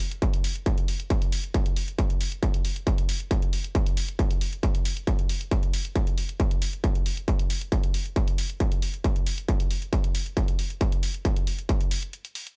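A straight 4/4 pulse drives this relentless techno excerpt, where an up-front, distorted, layered electronic kick drum, re-recorded in a large room, pounds from 0.2 seconds to 11.8 seconds over a dry, analog-toned electronic hi-hat, all in a bright 1980s-style digital production with little reverb before a brief break at 12.1 seconds.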